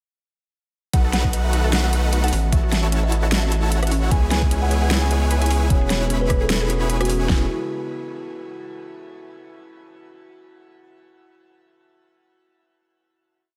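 Set in a digital ambience, this bright, playful future bass piece drops in at 0.9 seconds with two overdriven dubstep drum kit layers: a knocking kick and huge snare up front, and a half-time beat with hat rolls and rim clicks. A thick saturated sub bass holds the roots under huge, detuned supersaw chords whose syncopated pushes throb with sidechain pumping, while a woody kalimba with tape echo repeats a ringing riff melody. A very quiet unison pluck runs a 16-step arpeggio, an airy, breathy pad fades in at 1.6 seconds, and a mellow tine electric piano adds rootless held chords in the background from 4.1 seconds before everything resolves on a final chord at 7.3 seconds.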